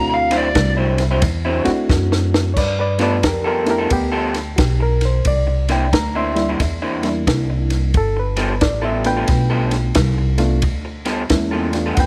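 A swung 89 BPM shuffle in 4/4 drives this soulful, rollicking electric blues excerpt in G mixolydian, set by a compact cocktail drum kit with dry, dark cymbals, a high-tuned snare and a punchy kick, alongside a woody pizzicato upright bass, both up front. A dark, overdriven lead guitar through a small cranked amp opens with a brief lo-fi line that ends at 0.7 s, while a slightly broken-up picked guitar riff and a reedy, clean electric piano heard through its built-in speakers fill out the D9, G9 and C9 changes. A drum fill from 1.9 s leads into a new pass at 2.6 s, with the band sitting in light reverb and small-room ambience.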